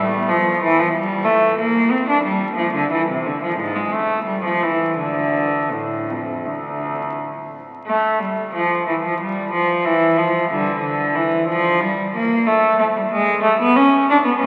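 Classical, baroque-style suite movement for unaccompanied cello in D minor, introspective and solemn, unfolding in 4/4 at a rubato 80-95 BPM as one player's bowed, reedy gut-string cello sits up front in period style across a range from D2 to D4 for the full 14.5 seconds, washed in a cathedral's long 6.4-second reverb and overlaid with the crackle of a very old 78 rpm record, with a contrasting second section beginning at 7.8 seconds in this fragment cut from a longer piece.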